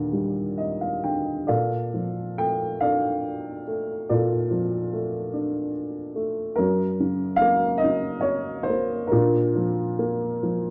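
A brief fill on a woody, boxy upright piano opens this short passage from a longer lyrical classical solo, and the piano stays close and mellow as it moves through Ebmaj7, Bbmaj7, Gb and Bb chords in a tender, rubato 6/8 sway, set in a moderate recital-hall reverb with a dark, warm production.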